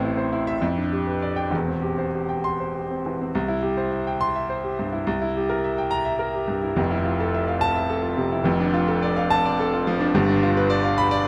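Brilliant and heroic, this short excerpt from a classical virtuoso piano study in 6/8 with free rubato features a solo grand piano, intimate and up front with audible action noise, ranging from E1 to C6 through a moderate recital hall reverb as the harmony moves from A minor through C and F major seventh to a closing G7 near 10.2 seconds.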